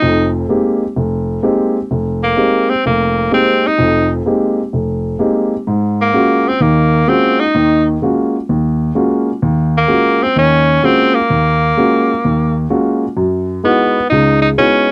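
A bright, punchy tenor saxophone with vibrato plays a forceful solo melody up front, while a warm grand piano with audible action noise accompanies it intimately, and together they swing through hypnotic, searching jazz built on suspended thirteenth chords that shift at 5.7 s and again at 13.2 s as a new section begins, all heard in a dry, close 1970s-style studio sound with a short booth ambience in this fragment of a longer piece.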